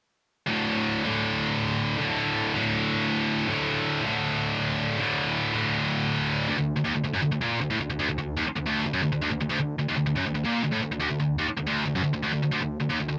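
A lo-fi home cassette recording with a modest booth ambience frames this relentless, aggressive metal fragment at 160 BPM in a straight 4/4, cut from a longer piece. A lone scooped, high-gain electric guitar, bright, picked and double-tracked, sits up front with distortion and tape colour, working between D2 and D3. It opens on a D5 power chord at 0.5 seconds, then moves into an unaccompanied, chordless passage from 6.5 seconds until it stops at 13.2 seconds.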